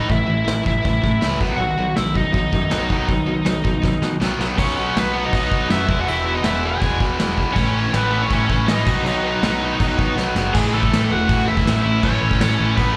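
A straight, driving 4/4 pulse from a vintage brush drum kit, with dark cymbals, a tight kick and fills at 3.8 and 10.2 seconds, pushes this upbeat, rebellious punk rock excerpt, anchored by an up-front, bright picked electric bass. A biting, overdriven lead guitar carries the melody through digital delay, while two tight distorted guitars with slapback echo play riffs in the background, joined at 4.6 seconds by a very quiet, double-tracked high-gain guitar. The whole performance sounds like a live club gig heard through the venue's PA.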